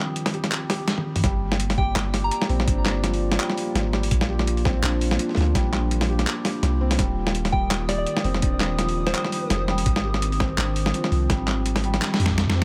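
Steeped in digital ambience, this heavy, spacious half-time drum and bass excerpt at 167 BPM opens with a moody, detuned analog pad pumping with sidechain and chorus beneath felt-muted upright piano arpeggios that are mellow, intimate and carry audible action noise through tape echo, before gritty, overdriven sampler-style boom bap drums with handclaps, hi-hat, a medium-tuned snare and toms sit up front, a deep sine 808-style bass and thumpy overdriven electronic kick arrive at 1.2 seconds, and a pure FM synth bell with chorus, phaser and digital delay drifts in the background from 1.8 and again from 7.5 seconds.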